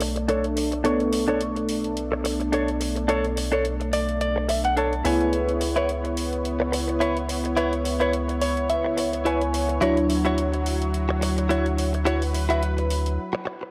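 A dry, gritty hardware sound with a moderate plate reverb gives this cut from a longer nu-disco piece a groovy, cosmic mood at 107 BPM in B dorian, with a light 16th-note swing. Up front, a clean, direct-recorded electric guitar carries the picked, compressed riff through subtle chorus and tape echo, adding fills from 3.7 to 5.3 seconds and again later. Beside it, a dark, glossy chorused synth bass with a filter pluck, a fast attack and tube saturation holds the low end, while a lush, thick unison pad with a bright, warbling vintage character and 12-bit sampler grit sustains the chords. In the background, a worn, slightly out-of-tune tine electric piano plays accompaniment through a combo amp with phaser and tape echo, and filter sweeps run across both the piano and the pad. Overdriven, layered electronic hi-hats keep time as the harmony moves from Bm9 to C#m7 to Dmaj9, before everything but the guitar drops out for a brief break at 13.2 seconds.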